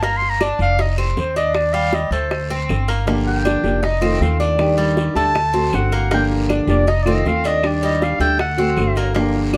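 Nostalgic and danceable, this short cut from a longer Cuban son and guajira piece in G minor moves at 158 BPM, with a smooth-topped classical clarinet soloing over a bright, metallic picked tres, a thumpy pizzicato upright bass up front, round low-tuned bongos, a raspy guiro and woody claves in the background, and a small fingerpicked nylon-string guitar joining at 3.1 seconds, all in a dark production with moderate studio reverb.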